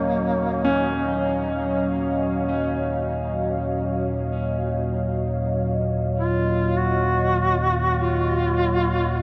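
A rumbling, ominous synth drone fades in beneath a deep, detuned pad with chorus and a faint, metallic singing bowl, while a distant duduk with vibrato and scooped notes carries a tape-echoed folk melody and a brilliant grand piano joins at 0.6 seconds with echoing arpeggios, all in free time in Eb minor and bathed in vast reverb for a cavernous, unsettling dark ambient mood.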